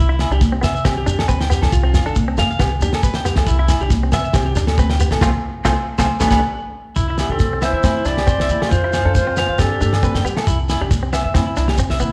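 Warm and carefree, this highlife guitar band excerpt at 137 BPM in C major swings lightly as a slightly broken-up electric guitar picks arpeggios over a woody, thumpy upright bass, a clean semi-hollow guitar with tremolo, a dry damped 70s drum kit with a fat snare, ringing agogo bells, grainy shekere and high-tuned congas in the background, with the band hitting an accent from 5.2 to 7.0 seconds before a raspy, growling clarinet takes the melody at 7.2 seconds alongside a breathy trumpet second line, all in a moderate, large studio reverb.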